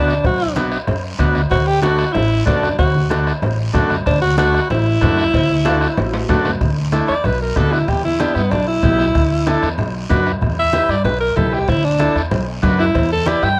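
Cumbia with a driving, fiery character, this short excerpt from a longer piece is led by a bright, up-front alto saxophone that sings the melody with pop-style vibrato and moves into a solo at 6.6 seconds. Just as prominent is a vintage, buzzy combo organ, clean and lightly vibrato-tinged, carrying the accompaniment over chords that circle through B minor, D and E minor. Underneath, a woody, growly pizzicato upright bass anchors the low end, while a distant bombo struck with a soft beater booms as if from a large room. Low-tuned congas played with soft hands ring close and dry in the background, joined by a raspy, band-limited guiro, and ringing metal-shell cowbell and timbales that drop out at the close of a drum fill and return at 11.7 seconds. Light reverb and the worn, warbling pitch drift of old cassette tape give the whole recording a nostalgic patina.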